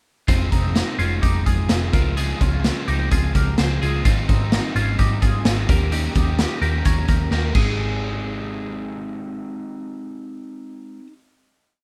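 A brisk indie backbeat at 129 BPM in straight 4/4 drives this short, nostalgic and youthful piece of jangly indie pop in Ab major, with a raw garage drum kit up front, its punchy kick, medium-tuned snare, hi-hat and crash sounding gritty and saturated in a pumping stone room, while a dark, foam-muted picked bass plays driving eighth notes under a chord cycle of Fm7, Dbmaj7, Abmaj7 and Eb7. A bright, twangy twelve-string electric guitar rings out a compressed arpeggio figure doubled in thirds through a phaser, and a crunchy overdriven guitar adds folk strumming on barre chord shapes. After a drum fill at 7.3 seconds, the drums stop and the band lands on a final Abmaj7 hit, with the twelve-string dropping out at 9.1 seconds and the overdriven guitar ringing on to 11.2 seconds, all in a rough home-demo sound with small room ambience.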